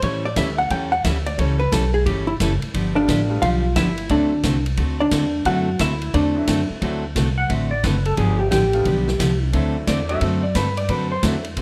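A dark, clean hollow-body jazz guitar takes the lead in this playful, cheerful western swing excerpt at 177 BPM in D mixolydian, riding over thumpy pizzicato upright bass, a bright picked dreadnought acoustic guitar, a swinging big-band kit with a punchy kick, and a brilliant upright piano in light reverb, before a clean lap steel slide guitar takes over the solo from 7.4 seconds.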